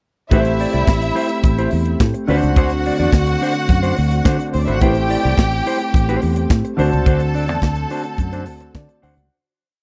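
A glamorous, danceable disco groove at 107 BPM starts at 0.3 seconds with the whole band together: a tight, up-front funk kit drives a four-on-the-floor beat with open hats on the off-beats, while a round, foam-muted fingered bass plays a syncopated line with chromatic approach notes over a simple Am7 to D7 vamp. A mellow electric guitar with spring reverb chops out sixteenth-note rhythm, a lush symphonic string section plays fast runs into held notes, a boxy grand piano holds spread chords with grace notes and short fills, and a soft, flute-like tonewheel organ with key click and slow rotary speaker sits in the background as a sustained pad. The dry, close 1970s-style studio sound fades out from 7.1 seconds as the piano adds a final fill at 8.5 seconds.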